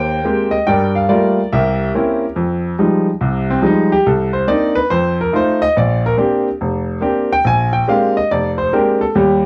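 A clear, intimate baby grand piano carries this cool, late-night solo jazz excerpt in F dorian at 142 BPM with a swung 4/4 feel, its up-front, naturally sustained tone and audible action noise set in a small room and coloured by worn, warbling cassette tape drift, moving through chords like Abmaj9, C7b9 and Fm9 before stretching into a solo passage from 2.4 s that settles on Bb69 and Bb13.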